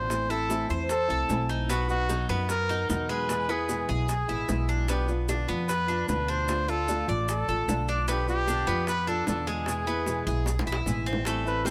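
This excerpt opens with a warm trumpet carrying the melody up front, touched with light vibrato and tape echo, over a dark, fingerpicked nylon-string guitar and a woody, growly upright bass played pizzicato. It is danceable, sultry Cuban son and guajira at 150 BPM in a straight 4/4. Just after the start, round, low-tuned bongos played with soft hands sit in the background beside grainy, mellow maracas, and at 0.3 seconds a bright, metallic Cuban tres joins with picked arpeggios on its doubled strings. The bass stays thumpy and forward, while the small-sounding guitar carries audible finger squeak. The harmony moves through Am, B, E, Bdim, Dm, Bdim and back to E, and a drum fill from 10.5 to 11.3 seconds closes the passage in light reverb.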